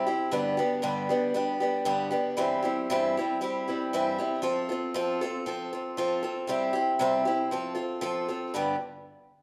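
A picked acoustic archtop guitar carries this short rock excerpt alone, its bright, boxy tone sitting up front with audible finger squeak. The mood is hopeful and jangly at a straight, steady pulse, moving from G through C/G and F to C, then through F once more and back to G. A large studio reverb wraps the guitar in a wet room sound, as if a band were playing live together.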